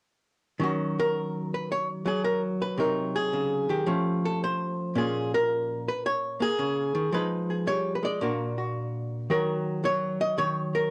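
Solo jazz with a moody, swinging feel, this brief cut from a longer piece features a lone archtop guitar, miked and amplified, whose dark, hollow-body tone sits up front with clean, picked, compressed playing from 0.6 to 10.9 seconds, moving through minor and diminished changes in light reverb beneath the worn, warbling drift of old cassette tape.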